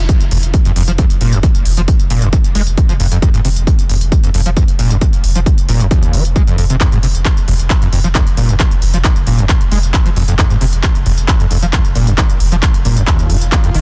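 The recording is dense and heavily limited, a modern master with little reverb that gives this short cut from a longer piece a dry, punchy weight. It is driving peak-time techno in a straight four-four, industrial and hypnotic in mood, built on a heavy, layered electronic kick drum with a tape-warm, small-room character. A techno drum kit sits lower in the mix with handclaps and smooth hi-hats, while a deep, round sine sub bass pulses with sidechain pumping, roughened by overdrive and darkened by a low-pass filter. Over it, a screaming sawtooth acid line squelches and bites, its resonant filter sweeping across the whole passage, thickened by ensemble chorus, pumping in the same way, and trailed by digital delay. A very quiet electronic swell slips in at 13.3 seconds, just before the cut.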